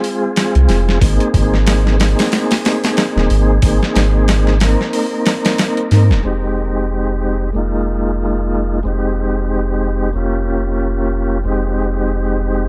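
A gritty, overdriven sampler-style drum kit drives this brooding, cinematic trip hop fragment, its compressed kick, hi-hat and medium-tuned snare sounding thumpy and re-recorded in a small room before the kit drops out at 6.2 seconds. A soft dub sub bass enters at 0.6 seconds and holds to the end, deep and round with a sustained, fast-attack tone that blends triangle and square wave colours. Throughout, a clean tonewheel organ plays accompaniment in its middle register through a fast rotary speaker with vibrato, tremolo and tape echo. The groove sits in 4/4 with a swung sixteenth-note feel, while the harmony moves from Fm and Abadd9 into a second section that circles Fm7 with Bb7sus4/F and Bbm6/F over an F pedal. All three parts sit up front in a dry, close mix, and the piece is cut from a longer work.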